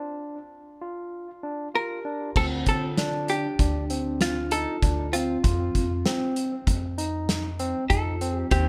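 Driving and intricate, this progressive instrumental cut from a longer piece moves in an uneven 5/4 with a straight feel, opening on a break where a dark, compressed hollow-body jazz guitar carries the melody with plate reverb while a barky tine electric piano plays bright, clean arpeggios through digital delay. The vibraphone, played with soft mallets, adds a mellow, ringing second line in the background from 1.8 seconds. At 2.4 seconds a thumpy upright bass with gut strings and a loose indie drum kit with a punchy kick, dark cymbals and a pumping room sound come in, as the harmony moves from C9sus4 to Dm7 and then F7.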